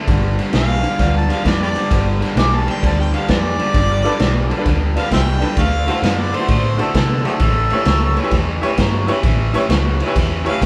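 Recorded as a band playing live in one room, this gritty, rollicking electric blues shuffle has a moderate studio reverb that gives it a close, lived-in sound. It swings along at 131 BPM in 4/4, moving from G7 to D9 and then A9 in this brief excerpt from a longer piece. An up-front, overdriven garage guitar riff opens the track, joined at once by a round, foam-muted fingered bass and a raw drum kit with a punchy kick, a medium-tuned snare, ride cymbal and a rolled-off top. From 0.6 seconds an overdriven harmonica takes the solo in a jazz style, with light vibrato, tongue slaps and scooped notes. At 4.0 seconds a bright, woody upright piano comes in as accompaniment, slightly detuned, with audible action noise.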